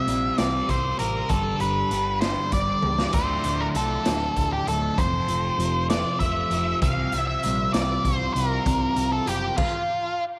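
A gritty, lightly reverberant small-room sound frames this brief, mysterious and shadowy stretch of psychedelic rock in a swaying 6/8, cut from a longer piece. Up front, an octave-fuzz lead guitar carries the melody through distortion and tape echo, over a double-tracked fuzz guitar riff with phaser, a round hollow-body short-scale bass, and a mellow tonewheel organ holding sustained chords with key click and slow rotary speaker in the background. A raw garage drum kit with a boomy kick, dark cymbals and a pumping room adds a fill at 2.8 seconds, and when the band stops at 9.6 seconds the lead guitar rings on until 10.2 seconds.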